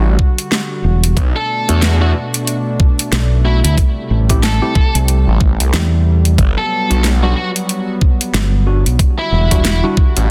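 A swung 16th-note groove at 92 BPM in 4/4 drives this playful, swaggering glitch hop excerpt in B phrygian, where a knocking, up-front electronic kick and a dubstep kit with a huge snare, metallic hats and rim clicks sit under a thick, swirling phased saw bass with overdrive and a round, punchy fingered electric bass with tube saturation, while a mellow, chorused analog pad pumps with the sidechain and carries 12-bit sampler grit, a clean tine electric piano adds pumping, delayed stabs from 1.7 s, and a distorted high-gain lead guitar with digital delay carries the melody from 1.4 s, in a dry, dense, heavily limited mix over chords moving from Em9 through Bm7, Am7 and Gmaj7 back to Em9.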